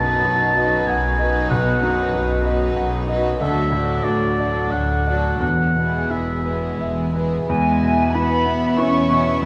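Heard through a moderate scoring-stage reverb, this tender, uplifting cinematic fragment in E major drifts in a rubato 3/4 around 85-96 BPM, with a bright concert grand piano carrying the accompaniment alongside a rich, distant viola section, while a dark double bass section and a floating cello section hold the bass, a sul tasto symphonic violin section and a roomy solo oboe trace second lines until the oboe drops out at 7.1 seconds, and at 7.5 seconds a chamber violin section with light vibrato takes up the melody as an up-front flute section adds a second line.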